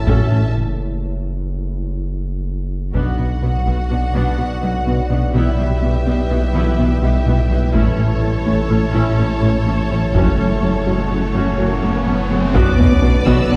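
A straight, driving 5/4 pulse at 125 BPM in B minor carries this brooding, futuristic excerpt from a hybrid orchestral and electronic film score, built on a saturated, up-front sub bass, a fat analog bass riff with a moving notch, a tight sawtooth sequenced synth arpeggio, and a deep, moody ambient pad with chorus and its own reverb. Lush bowed strings fill the middle, with an intense, distant violin section carrying a second line over rich violas and very quiet cellos and double basses, while a compressed taiko ensemble pounds in the background, breaks off after a fill and returns at 7.8 seconds. An electronic riser and sub drop enters at 10.0 seconds and leads to an impact at 12.5 seconds, where a smooth high violin melody and bright trombones join and mellow, roomy French horns, briefly heard at the opening, return, all set back on a reverberant scoring stage.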